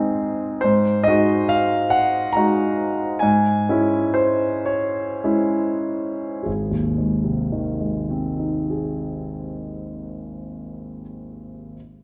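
A rubato 6/8 lilt in dotted quarters at 31-48 BPM carries this tender, serene romantic nocturne in Ab major, a short portion cut from a longer piece for solo concert grand piano, which sounds clear, natural and up front with deep bass and long sustain across a span from Ab1 to Bb5, easing gradually slower from the opening until 6.5 s as the harmony shifts from Ab to Dbm/Ab at 3.2 s before settling home on Ab at 6.5 s, all bathed in a wet recital hall reverb.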